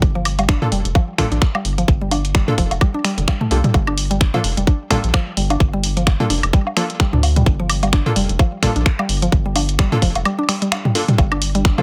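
Sparse and hypnotic, this excerpt of minimal techno in G minor runs at 129 BPM with a swung sixteenth feel. A tight, up-front electronic kick and a punchy analog drum machine with finger snaps and hi-hat drive it, while a rubbery, hollow square bass pumps under sidechain. Overdriven electronic woodblock and toms join, along with a woody, mallet-like synth pluck riff carrying chorus and tape echo and a crisp, detuned wavetable chord stab with delay. A swarming, tense drone appears very quietly at 11.5 seconds in a dry room.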